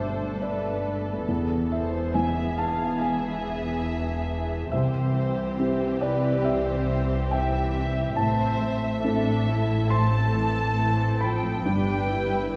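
A cinematic, emotional film score for orchestra, this brief excerpt cut from a longer piece moves at a slow, rubato pace with a longing, bittersweet mood. Muted violins carry the melody while a second violin line sits above it, both bowed con sordino with vibrato and a veiled, dark colour, the upper line sounding more distant. A felt-muted upright piano, mellow and intimate with a thick felt tone, provides the accompaniment alongside a softly vibrating viola section tucked in the background. Muted cellos and double basses anchor the low end, the cellos lush and set back, the basses distant yet full. All parts play together from the opening to about 12.6 seconds, framed by a spacious scoring-stage reverb that places the listener further back in the room, as the harmony drifts from Gadd9 through E, C and Am before settling on G.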